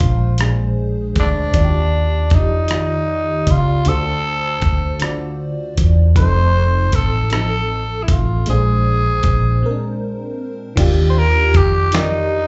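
Slow six-eight R&B at 52 BPM in Eb major, this warm, intimate excerpt sounds like a live club gig heard through the venue's PA, with a dull top end and a touch of room reverb. A breathy, raspy tenor saxophone carries the melody up front between D4 and C5, its growling subtone tempered by a smooth top and dressed in slapback echo and plate reverb. Beneath it, an FM electric piano layered with a soft pad spreads lush, dreamy, detuned chords through chorus, phaser and slapback echo, moving from Bb9 through Ebmaj9, D7 and F7 before returning to Bb9. A woody fretless electric bass sits dark, round and punchy, while a gritty, compressed sampler-style kit with a thumpy kick, medium-tuned snare, rim click, hi-hat and crash gives the groove a dusty soul character. A break arrives at 9.6 seconds, the passage moves into a new section on Ebmaj9 at 10.8 seconds, and the drums stop at 12.1 seconds.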